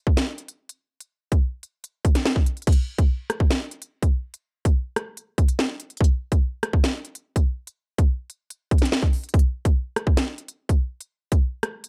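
An up-front electronic drill drum kit, with a hard-clipped kick, sharp snare, crisp hi-hats, rim clicks and crash cymbal, drives this dark, tense hip hop excerpt at 144 BPM in a half-time 4/4 feel, entering at 0.1 s and shifting into a new section at 2.7 s, all set in a shadowy production with light reverb.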